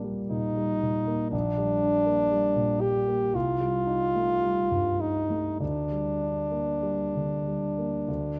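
From the first moment, a clear, up-front French horn sings a yearning, elegiac solo melody over warm grand piano chords with short sustain, moving freely in rubato through Eb/Bb, Gm/Bb, Am7b5/C and Gm/D in this romantic classical duo, captured by close, detailed microphones in a moderate scoring-stage reverb.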